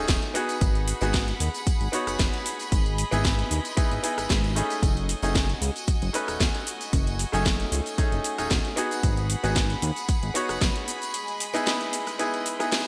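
Sensual and sleek, this 114 BPM nu-disco excerpt in F# dorian sets a brilliant grand piano pumping with sidechain and delay over close, earthy violin chords, a glossy chorused synth bass that stops at 10.7 s, a punchy electronic kick, a house kit with cracking snare, metallic hats and gated reverb, and a distant tambourine, all cycling through G#m7, C#m9/G# and F#m69 in a bright 1980s-style digital mix before a band accent at 12.7 s.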